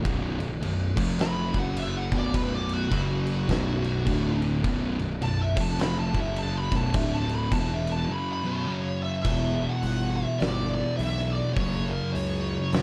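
Dark, dry production frames this ominous, hypnotic stoner and doom metal in B minor at 104 BPM with a swung 4/4 feel, where two thick fuzz guitars grind out a riff in the background over a growly, overdriven fuzz bass and an oversized low-tuned drum kit with a fat snare, punchy kick and dark cymbals in a bright stone room, while a compressed fuzz lead guitar with wah and tape echo enters at 1.2 seconds for a solo, a break arrives at 8.1 seconds, and the music shifts to an E minor chord at 9.2 seconds.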